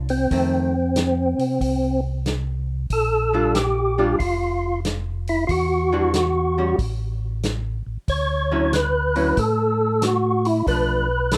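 Soul jazz organ trio in D minor at 93 BPM, with a swung 4/4 feel and a smoky, late-night mood, heard as a short cut from a longer piece. A mellow tonewheel organ carries the bass line from the very start, its round, dark, clean tone shaped by chorus vibrato and a slow rotary speaker, sitting up front in the mix. Above it, a second tonewheel organ plays the melody with a fat, lightly overdriven, percussive voice featuring third harmonic percussion, chorus vibrato, a fast rotary speaker and plate reverb, and it is the loudest part. A hollow-body archtop guitar, miked and amplified, adds clean, picked accompaniment from 0.3 seconds, with a plate reverb around it. The vintage drum kit keeps time on hi-hat, kick and snare with a natural, acoustic studio-room sound, a medium-tuned snare and a tight kick, sitting low in the balance. The harmony moves through F7, Bb6 and Em9 to a brief chordless stretch at 6.8 seconds before landing on Dmaj9 and then Bm7b5, all in a small room with a rough home-demo character.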